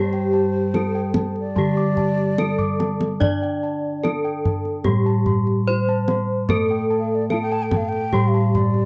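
Serene and ceremonial, this short Javanese gamelan passage moves at an unhurried 73 BPM in a straight 4/4, set in D slendro. A bronze metallophone struck with a horn mallet carries the melody up front, its paired tuning producing shimmering beats in a dark, smooth tone, while a second bronze metallophone played with a wooden mallet rings out an accompaniment an octave lower. Above them, a breathy, bright low xiao adds an expressive second line with vibrato and tongued notes, touched by a slapback echo. Bossed gongs struck with padded beaters supply mellow, round arpeggios high in the texture, and another set of soft bossed gongs anchors the bass. A kendang with deep, soft-handed strokes keeps time from 0.1 seconds and breaks into a drum fill between 2.6 and 3.2 seconds, all captured in a dry, close 1970s-style studio sound with light reverb.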